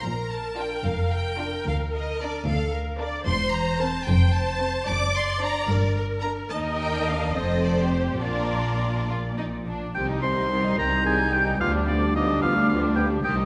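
Bathed in a wet scoring-stage reverb, this cheerful, graceful fragment of a quick classical-period orchestral movement in rubato 6/8 at 74 BPM sets a rich violin section on the melody in Bb major, with a second violin line, lush violas, woody cellos and soft-attack double basses beneath. A bright, up-front oboe enters at 9.9 s, just before the music turns to C minor at 10.0 s, where a mellow background clarinet and a French horn section's sustained chords join, followed at 10.8 s by a pure concert flute.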